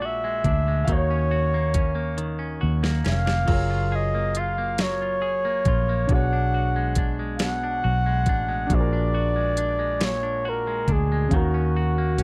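A slow, straight six-eight R&B groove sets an intimate mood in this dry, close 1970s-style excerpt. A smooth R&B drum kit comes in at 0.4 s with a knocking kick, deep snare, smooth hi-hat and crash, tape-warm and up front, with a drum fill at 2.2 s, while a dark, round, foam-muted vintage fingered electric bass sits just as forward. A close-miked flugelhorn carries the jazz-style solo melody with vibrato over a clean, compressed semi-hollow guitar second line and a natural-sounding concert grand piano keeping to the background.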